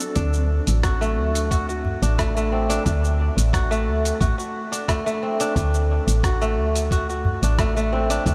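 A fingerpicked kora sits up front, its ringing, crisp arpeggios between A3 and A4 roughened by vintage 12-bit sampler grit and trailed by tape echo. This is an earthy, peaceful piece of organic downtempo at 89 BPM in 4/4 with a straight feel, resting on a D7 chord in D mixolydian. From 0.2 s a woody, round FM bass with a fast attack and decaying notes sits dark and prominent between A1 and D2, pumping with sidechain compression alongside a compressed, thumpy electronic kick. A dusty soul sampler-style kit adds gritty cabasa, hi-hat and rim click, and both drum parts carry studio reverb. A small acoustic udu taps in briefly at 1.8 s and again at 7.2 s, all within a dreamy mix soaked in a huge ambient reverb, in this short section taken from a longer piece.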